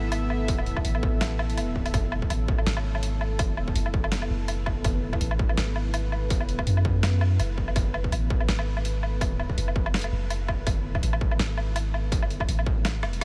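A moody, detuned analog pad holds a sustained F#madd9 chord with chorus and sidechain pumping, while a deep, mellow 808-style bass with tube saturation sits up front beneath it, giving this half-time drum and bass excerpt a dark, cinematic cast. A gritty, pitched-down sampler kit of hi-hat, rim click, snare and woodblock carries a swung half-time feel, joined at 0.5 seconds by a distorted, overdriven electronic kick with a small-room character. The mix has a light digital ambience, and a drum fill arrives at 13.0 seconds just as the clip ends.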